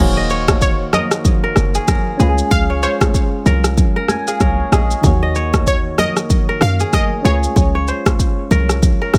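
An up-front electronic afro-pop drum kit with a deep kick, rim click and shaker drives this breezy, sunny afrobeats excerpt, joined by a punchy, tight 808-style bass, a crisp, ringing fingerpicked kora riff with delay, soft, round electric-piano-like synth keys with chorus and a fill from 3.8 to 5.0 seconds, bright, high-tuned congas in the background, and a detuned sawtooth analog pluck melody with chorus and delay that enters at 0.6 seconds, in a dry mix.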